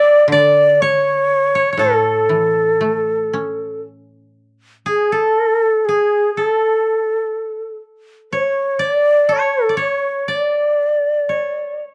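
Japanese traditional chamber music in A Ryukyu mode, austere and calm, moving at a rubato 60 BPM in 2/4 as an excerpt from a longer piece. An up-front, airy shakuhachi carries the melody with a hollow, bamboo tone, soft attacks and vibrato. A bright, woody koto plays a second line in a similar register, while a mellow, dry koto adds low accompaniment from 0.3 to 5.4 s, with the passage shifting to new material at 4.4 s under light reverb and a dark production.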